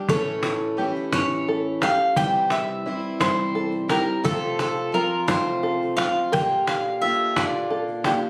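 Acoustic folk for a duo or small band in a slow 6/8 at 58 BPM, this reflective, wistful passage from a longer piece moves through A, C, F and Bb. An up-front, woody mandolin carries the melody over a picked steel-string guitar with an auditorium body, while a twangy, plunky open-back banjo adds fingerpicked arpeggios and a snappy, band-limited cajon played with soft hands keeps the pulse. From 2.2 s a mellow French horn enters in the background with a distant classical-style second line, all captured on a phone in the room with moderate reverb.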